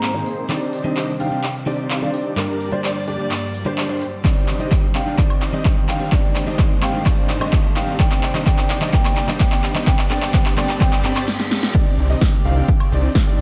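Festival progressive house at 128 BPM in C minor, emotional and powerful, this excerpt builds over a huge, thick supersaw riff under a filter sweep, with a punchy, overdriven big-room kit of crisp hats, snare, claps, shaker and woodblock, while a breathy flute melody with dub echo, a bright clean electric guitar, a reedy chamber string section and a dark, boxy grand piano playing arpeggios sit in the background. An up-front electronic kick enters at 4.2 seconds, and a very quiet riser and reverse cymbal lead to a short break at 11.3 seconds. The drop lands at 11.7 seconds, and at 12.0 seconds a lush detuned saw bass with chorus joins on C2 beneath the pumping chords.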